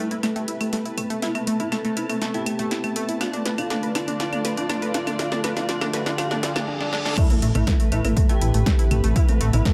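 Dramatic, hypnotic melodic techno excerpt that builds from the start under a smooth, expressive portamento sawtooth lead, a round detuned analog pluck arpeggio, an eerie inharmonic FM bell, a deep moody pad, veiled muted strings and a dry, overdriven analog drum machine playing a drum fill, as filter sweeps on the lead and bell, a riser and a reverse cymbal climb toward a drop at 7.2 seconds. There an impact lands alongside a punchy, layered electronic kick, followed shortly by a menacing, saturated detuned saw bass and, a little later, a very quiet resonant drone with moving overtones.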